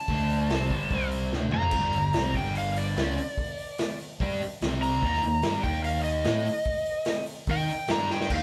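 A straight four-four groove from a vintage drum kit with a punchy kick, a rolled-off top and a fill at 1.3 seconds drives this heavy, brooding blues rock and southern rock power-trio excerpt, where a sludgy, double-tracked distorted guitar riff and a dark, round overdriven fingered bass sit under an overdriven slide guitar solo that runs the full 8.4 seconds, all played live in one room with moderate studio reverb.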